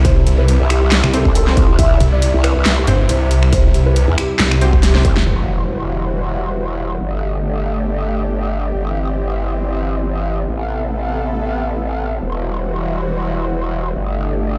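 Heavy wobble dubstep at 138 BPM in a half-time feel, this aggressive passage is cut from a longer piece and opens straight into a drop. A snarling, distorted saw bass hits hard up front alongside a punchy, tape-warm electronic kick beneath a dubstep kit of finger snaps, handclaps, metallic low-passed hats and a huge filtered snare, while a soft, felt-muted upright piano carries a dark, intimate melody with audible action noise and digital delay. A lush supersaw pad holds sustained chords with sidechain pumping throughout, and a growl bass, wobbling, detuned and bright with chorus and overdrive, enters at 0.6 seconds and runs to the end. Bold orchestra-hit-like synth stabs with ring modulation and a filter pluck sit in the background with reverb and delay. After a drum fill and a band accent, the drums, saw bass and piano drop out by 5.3 seconds, where a distant electronic impact lands and the second section moves through Emadd9, Gsus2, C/G and Amadd9 over the pad and growl bass. 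The whole mix sounds played on a big sound system in a bare, stone-reverberant room.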